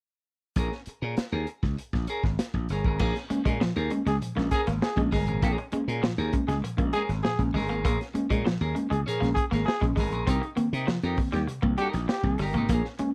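A dry, close studio sound in a 1970s vein frames this cool, driving funk groove, cut from a longer piece, at 99 BPM in a straight 4/4 in Bb dorian. From 0.6 seconds a crunchy breakbeat kit of kick, snare, hi-hat and crash sits up front with a saturated, rolled-off grit and dark cymbals, beside a bright, growly slap bass and a clean, picked electric guitar comping over Bbm7. At 3.0 seconds the groove fills out as a twangy guitar at the edge of break-up plays a riff through analog chorus, while a worn, slightly out-of-tune tine electric piano adds mellow stabs. A raspy, growling trombone enters at 4.1 seconds with a punchy, brilliant second line full of vibrato, standing forward in the mix. The harmony shifts to Cm7 late in the passage before the parts drop away around 13 seconds.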